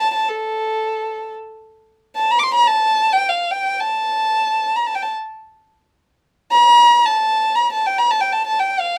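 Hypnotic and longing, this Persian modal piece unfolds in free time in the dastgah of shur on A, in a brief nine-second passage cut from a longer work. A single bowed violin carries it alone from 0.0 to 9.0 seconds, moving between A4 and D6 with a dark, woody tone. It is played sul tasto with vibrato and sits up front in light reverb.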